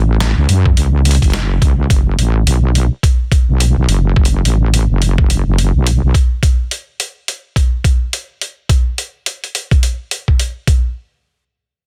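A heavy, saturated wobble bass with chorus opens this swaggering, gritty glitch hop excerpt in F# minor at 106 BPM with a 16th-note swing, joined at 0.2 seconds by a pitched-down, sampler-style kit of hi-hat and medium-tuned snare and at 0.7 seconds by a thumpy, up-front electronic kick, the bass dropping out at 6.1 seconds while the drums carry on in a dry, dense, heavily limited mix.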